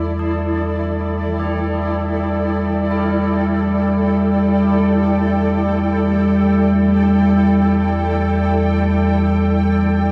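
Soaked in a wet echo chamber with a heavy reverb tail, this cut from a longer dark ambient drone piece feels ominous and dark, drifting in free time around E minor with tuning set to A4 = 444 Hz. Up front, a deep rumbling drone holds the low register from E2 to G3, its detuned, warbling tone carrying a vintage character and a slow, sustained swell of its own reverb. Sitting beside it, a granular cloud pad sustains chords between E4 and G5, its blurred, evolving texture mellow and full-bodied, lifted by shimmer reverb. From 0.2 seconds, tubular bells fade in far in the background, ringing out solemn, metallic arpeggios from D4 to G4 through tape echo and shimmer reverb. The whole passage rests on a single E minor chord, letting the heavy echoes and the dark weight of the drone fill the space.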